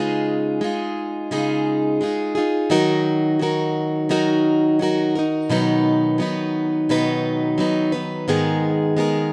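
Pop in D-flat mixolydian at 86 BPM, this brief excerpt carries a carefree, heartfelt mood, with a gentle sixteenth-note swing giving the 4/4 pulse an easy lilt. A single picked, plugged-in steel-string acoustic guitar plays alone for the full 9.3 seconds, ranging from Ab2 up to Cb5. Its tone is warm and up front, with audible finger squeaks adding an intimate, human touch, and a slapback echo lending each note a quick doubled edge. The harmony moves from Dbadd9 to Ebm, then to Cb at 5.5 seconds before settling on Abmadd9 near the end. Recorded outdoors with little reverb, the sound is dry and close, leaving the guitar's concert-style clarity fully exposed.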